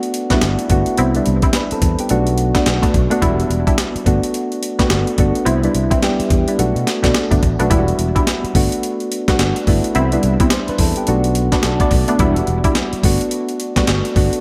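The breakbeat sampler-style drum kit sits up front in this slick, bouncy new jack swing excerpt, its compressed, gritty sound built on a thumpy kick, a high-tuned snare and hi-hat, driving a 107 BPM groove in 4/4 with a 16th-note swing. Soft electric-piano-like synth keys carry the accompaniment, round and mellow with a fast attack, decaying tones and a chorus shimmer, cycling through Gmaj7, Cmaj7, Bm7 and Em7 in a smooth R&B progression. A sustaining fretless electric bass fills the low end with an amped, growly and punchy tone. Quieter in the mix, a funky polysynth comp adds dark, sawtooth-edged stabs with a sub octave and a filter pluck, treated with chorus and delay, from 0.3 to 13.9 seconds. The bright 1980s-style digital production sits in a moderate plate reverb, giving this short excerpt of a longer piece a glossy, polished sheen.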